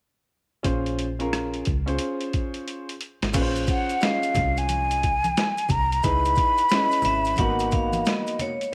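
A swung 89 BPM boom bap groove from a gritty, pitched-down sampler kit with a thumpy kick and high-tuned snare sets up this smoky, nocturnal jazz-hop excerpt in Bb phrygian. A woody vintage upright piano lays long-sustaining Bbm9 chords over a dark, round, foam-muted fingered electric bass. After a drum fill at 2.7 seconds, distant maracas and congas join, and a breathy, hollow, close-miked silver concert flute enters at 3.7 seconds with vibrato and slapback echo. A ringing vibraphone with slow motor vibrato adds a second line at 6.7 seconds as the chords move through Dbm9 and Abm9, all in a small, lightly reverberant room.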